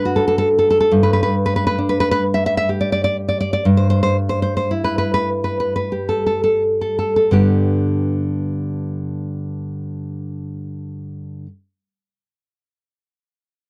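Nostalgic and sunny, this romantic piece for solo classical guitar drifts in rubato 3/4 time between 40 and 70 BPM in G major, easing down over its first 7.3 seconds before a second section begins. The fingerpicked nylon-string guitar sits up front with a dark, full-bodied tone reaching from G2 to E5, finger squeaks audible as the harmony moves from D/G through G5 and G69 to settle on G at 7.3 seconds. Light reverb touches a dry, close 1970s-style studio sound in this brief cut from a longer piece.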